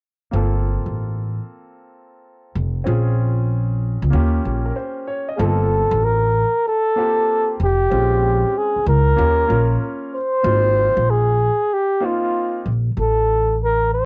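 Jazz-hop at 95 BPM with a swung 16th-note feel, nocturnal and mellow, this short excerpt opens at 0.3 seconds on an intimate concert grand piano whose audible action noise and vintage smoothness sit beneath a woody, up-front pizzicato upright bass with steel strings and transformer saturation. At 5.4 seconds a breathy, dark flugelhorn enters as the solo melody, with light vibrato, a soft attack and cassette-tape coloring. The chords move through Gm11, Bbm9, Eb9 and Ab69 before the piano drops out at 12.7 seconds, all in light reverb with the character of a home cassette recording.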